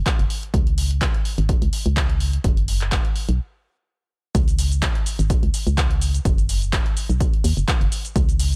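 Soulful and bittersweet, this piano house excerpt moves at 126 BPM in 4/4 with a light 16th-note swing. A hollow, dark, organ-like FM bass with a fast, decaying attack sits up front and pumps against an electronic kick with a punchy analog thump, while an analog drum machine adds handclaps, hi-hat and shaker, both drum parts carrying a small-room character. The mix is dry and close, and after a stop at 3.4 seconds the groove drops back in at 4.3 seconds for the second section.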